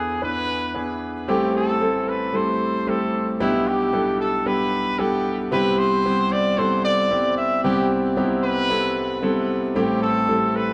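Anthemic and hopeful, this short pop passage at 113 BPM sets a punchy, roomy trumpet melody with vibrato and a touch of delay against a clear concert grand piano accompaniment whose deep bass, long sustain and audible action noise sit intimately up front. Both parts play together throughout, moving from an opening E7 into a Am7, Em7/B and Cmaj7 progression from 1.3 seconds. The whole band sounds as if playing live together in a reverberant stone room.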